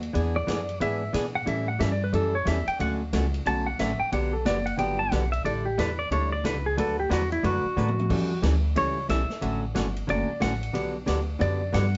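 Recorded live in one small room with a modest reverb and a dulled, rounded top end, this cheerful western swing excerpt moves with a bouncing swing feel. A bright, twangy lap steel guitar takes the slide solo up front, entering just after the start. Beneath it, a woody, thumpy upright bass holds down the low end and a dark, picked hollow-body jazz guitar comps through seventh and sixth chords, while a big-band drum kit with a punchy kick swings along and drops in a short fill at 7.8 seconds.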